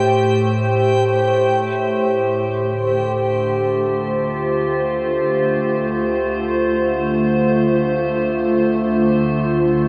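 Drenched in long plate reverb and echo, this reflective, spacious ambient excerpt in D minor drifts in free time, led by an up-front, glassy FM pad that sustains chords with ensemble chorus and a slow attack, while a distant, bowed cello section holds a lush, vibrato bass in the background, a reversed, granular, detuned texture glimmers brightly on a high note until 2.5 s, and a barely audible, slightly broken-up electric guitar picks arpeggios for the first 1.7 s as the harmony moves from Am7 to Dm7 at 2.4 s.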